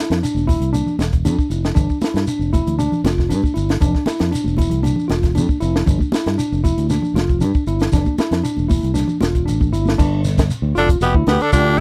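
Afrobeat with a joyful, hypnotic pull, this short cut from a longer piece rides a straight groove in four that moves between F and G power chords, with a brief Fmaj7 colour before returning to G. A clean tine electric piano, heard through its built-in speakers with a slapback echo, spins arpeggios up front while a punchy fingered electric bass sits direct and amped beneath it. The compact cocktail drum kit sounds dry and acoustic, with dark cymbals, a high-tuned snare and a punchy kick, and a grainy, mellow shekere adds texture from a live room. Bright, high-tuned congas played with soft hands sit in the background until 10.0 seconds. At 10.8 seconds a horn section arrives: a raspy, gritty tenor saxophone leads with vibrato and scooped notes, while a clear trumpet and a dark, breathy bass trombone support it further back. The whole recording has a dry, close 1970s studio sound with little reverb.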